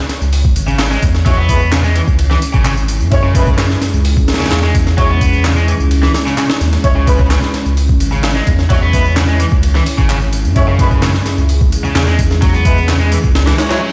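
This gritty, raw breakbeat excerpt in C# minor opens at 0.1 s with a compressed, pitched-up sampler-style drum kit carrying a thumpy kick, a high-tuned snare, hi-hat and ride cymbal, sitting up front with a tape-warm edge in a small room ambience. Layered electronic tambourine and handclaps sit beneath it, while a dark analog pad holds sustained C#m chords, its detuned sawtooth body thickened by chorus, a sub octave and sidechain pumping. A deep, saturated sub bass with a fast attack joins almost at once, sitting up front with tube saturation, and an overdriven, picked electric guitar riff with digital delay follows soon after. At 1.3 s a mellow horn section adds jazz-style ensemble stabs with light vibrato, a smooth top and octave doubling, also trailed by digital delay. The straight 129 BPM groove rides a single chord over large studio reverb and faint mains hum, and a reverse cymbal in the background closes the passage at 13.6 s.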